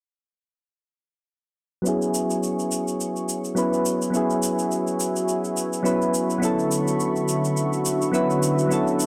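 Soft, round electric-piano-like synth keys sit up front from 1.8 seconds. Their mellow, fast-attack tone is coloured by chorus, analog delay and a filter sweep that runs through the passage. A thick, detuned unison pad holds sustained chords beside a layered electronic shaker, moving from E69 to Dmaj13 at 6.4 seconds over a lightly swung sixteenth feel, and this relaxed, sunny sunset chillout fragment carries light digital ambience over a dry, gritty recording with transformer saturation.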